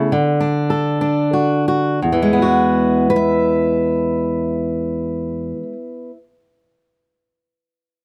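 Folk for solo fingerstyle acoustic guitar, gentle and warm, moving in a rubato 3/4 between 82 and 109 BPM in E mixolydian, and slowing down through its first 2.0 seconds. A fingerpicked steel-string acoustic guitar with a dark, auditorium body sits up front, spanning E2 to E5 and moving from a D chord to Eadd9 at 2.0 seconds. Light reverb surrounds this short fragment cut from a longer piece.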